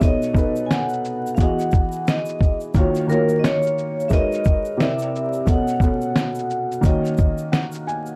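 A compressed, pitched-down sampler-style drum kit sits up front in this melancholic, hazy lo-fi hip hop excerpt, its thumpy kick and fat snare muffled beneath hi-hat and shaker hits in a swung 88 BPM groove in 4/4. A felt-muted upright piano carries the accompaniment in Eb phrygian, soft and intimate with audible action noise, moving through lush extended chords such as B9, Emaj9 and Abm11 before settling on Ebm7. Above it, a vibraphone struck with hard mallets sings the melody in a dark, metallic, ringing tone shaded by slow motor vibrato, both keyboard parts rounded off by a low-pass filter. A grainy egg shaker ticks close but in the background throughout. The vibraphone drops out at 6.8 seconds while the piano plays a gentle fill until 8.2 seconds over the continuing drums and shaker, all within a dry, gritty hardware sound touched by light reverb, transformer saturation and vinyl crackle.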